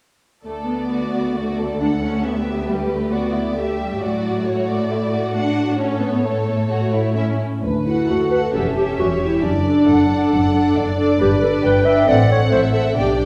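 Bowed violin sections open this graceful, lively classical-period passage with rubato, one carrying an expressive second line and the other a smooth, even melody, over lush violas and a close, focused cello bass, all ringing in the wet reverb of a recital hall. At 7.6 seconds a mellow solo clarinet adds its own second line while a rich double bass section deepens the low end, and the harmony moves from D through G toward F#dim/A before the cut at 13.3 seconds.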